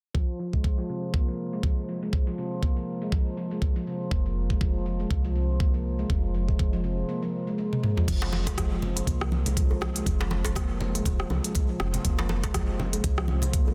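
A dense, heavily limited modern mix in light small-room reverb carries this hypnotic, earthy afro house excerpt in F minor at 121 BPM, where a bright, ringing handpan plays up-front arpeggios through a filter sweep, dub echo and sidechain pumping over a knocking electronic kick, a woody, round FM bass enters at 4.1 seconds with its own pumping, and a drum fill at 7.7 seconds brings in an afro-pop kit with smooth hats, crash, rim click and toms, followed by very quiet, damped, low-tuned congas at 8.1 seconds and a tight, cracking djembe at 8.2 seconds.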